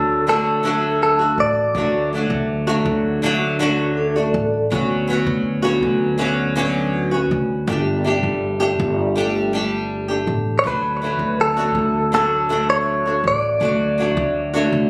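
This has the loose, roomy sound of a phone recording made in a small club, with a moderate, short reverb around the players. It is a heartfelt, carefree acoustic pop piece in D major at 81 BPM in a straight 4/4, cut from a longer performance. A boxy, double-tracked flamenco guitar sits up front, fingerpicking the accompaniment throughout over a woody pizzicato upright bass in the low register. A bright, twangy, compressed clean electric guitar carries the melody with a touch of delay, opening the piece, falling away by 2.1 seconds and returning at 10.6 seconds. Around 3.8 seconds a dark, ringing vibraphone played with medium mallets adds a brief second line, its fast motor vibrato and delay giving a smooth metallic shimmer. The harmony moves from D to Bmadd9/D, then Gsus2, before settling back on D.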